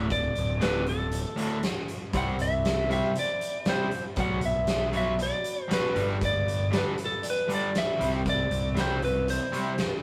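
A rough rehearsal-room recording with light reverb frames this sunny, swaggering classic rock excerpt at 118 BPM in straight 4/4, moving through D5, C, Bm, G and C. A bright, scooped distorted electric guitar and a very quiet, crunchy overdriven guitar drive the riff from the start. Beneath them sit a round, punchy fuzz-toned fingered bass and a huge arena drum kit with a fat snare, while a slightly broken-up lead guitar carries the melody up front. From 2.1 s a boxy, picked swing-style acoustic guitar with audible finger squeak joins in the background.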